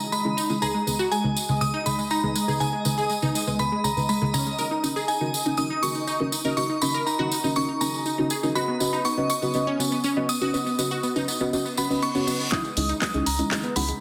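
Dreamy and emotional, this 14-second excerpt of progressive house moves at 121 BPM in a straight 4/4, cycling through C#madd9, G#m/C#, D#m7/C# and B before returning to C#madd9 at 12.5 seconds. A glassy, crystalline FM bell carries the melody over deep, mellow chord stabs that sit up front with chorus, phaser and a filter sweep, while a lush, detuned unison pluck spins bright arpeggios through phaser and dub echo. A jingly acoustic tambourine, close and dry, keeps time alongside a twinkling granular texture that sparkles in the background with its own reverb, and the bell, stabs, pluck and texture all pump against the sidechain. From 11.8 seconds a reverse cymbal and riser lead into a build-up where a punchy, overdriven kick and a tape-toned house kit of handclaps and hi-hats arrive at 12.5 seconds with a drum fill, a filter sweeps the bell, and a round, nasal analog bass holds C#2 from 12.8 seconds. 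The whole sits in a wet digital room reverb under a dense, heavily limited modern master.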